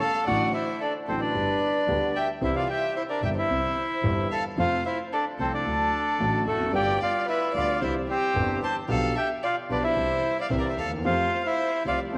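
A reedy, up-front bandoneon carries the melody in this elegant, playful rubato tango excerpt, joined by a warm, bowed violin second line with vibrato, soft attacks and expressive portamento, while a concert grand piano with a deep bass and a clear, earthy, distant bowed double bass with light vibrato enter at 0.3 seconds beneath it, all set in a wet echo chamber reverb.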